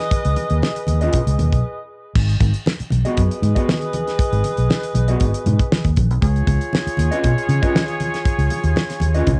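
The muted fingered electric bass stands out most, sitting up front with a dark, round, foam-muted tone that carries this sly, funky excerpt in G# dorian at 118 BPM in a straight 4/4. Beside it, the damped 70s drum kit is dry and close, with a fat snare, tight kick, dark cymbals and hi-hat, and a crash, all colored by cassette tape. A horn section plays a second line from the start, punchy with light vibrato but set back in a roomy space, passed through tape and an analog delay. Very quiet, low-tuned congas with a thick skin are played with soft hands, while a mellow, clean fingered electric guitar enters at 1.0 seconds with spring reverb. After a brief break at 1.6 seconds, the harmony moves from C#7sus2 to G#m7 at 2.2 seconds and on to C#9 at 6.2 seconds, all with the light reverb and gentle haze of a home cassette recording.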